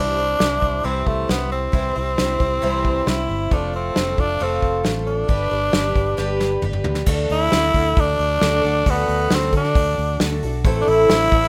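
Dusty and reflective, this brief folk rock and heartland rock excerpt moves at 135 BPM in a straight 4/4, with a gritty, raspy tenor saxophone carrying the melody up front over a shimmering, octave-doubled twelve-string acoustic guitar, a round, dark fingered electric bass and a soft brush drum kit with dark cymbals that enters at 0.2 s and plays a fill from 6.2 to 7.1 s, as the chords move from C through F and G to D and A minor in a rough home demo mix with light reverb and studio ambience.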